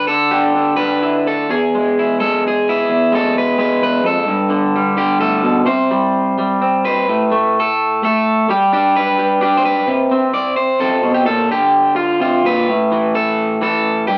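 The recording has a dark, warm production with light reverb, and it sounds like a section lifted from a longer folk piece. One electric guitar carries everything, played solo through a small old amp and placed up front, its tone bright, twangy and slightly broken-up with a lo-fi edge. The mood is gentle, moving at 128 BPM in a straight 3/4, with the picked lines ranging from E2 up to D5. The first half moves through Dsus2, E, Gsus2 and C5. At 7.1 seconds a new section opens with an unharmonised moment before settling into G, Amadd9, Bb and finally A5. The Bb brings a shaded colour to the otherwise open, suspended harmonies before the passage ends at 14.2 seconds.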